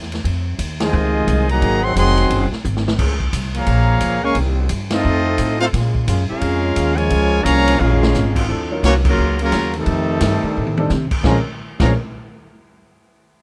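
A brisk swing feel at 174 BPM in Bb minor drives this brassy, dramatic big band jazz excerpt, with a woody, thumpy pizzicato upright bass up front and a punchy-kicked drum kit with a rolled-off top marking fills around 2.6, 7.8 and 10.6 seconds. From 0.8 seconds a clear, tight trumpet section carries the melody with vibrato over a soft-attacked trombone line, while a second, close-miked trombone section holds sustained chords in the background until 8.4 seconds. A natural-toned baby grand piano then slips into the background accompaniment as the harmony moves from Ebm9 to F13 and on to Bbm7, all under light reverb in a rough home demo mix.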